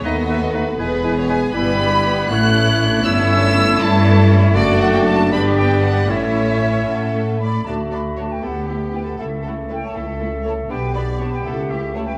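Lively and spirited, this quick classical-period movement in 6/8 for symphony orchestra sets a lush, vibrato-laden symphonic violin section on the melody. A focused chamber violin section, a pure-toned flute section and a clear clarinet carry second lines, and a distant oboe adds its own line until 7.4 s. Beneath them, a smooth viola section and a punchy bassoon accompany, a dark French horn section sustains chords, and an expressive, close cello section joins a chamber double bass section on the bass, all in a wet scoring-stage reverb.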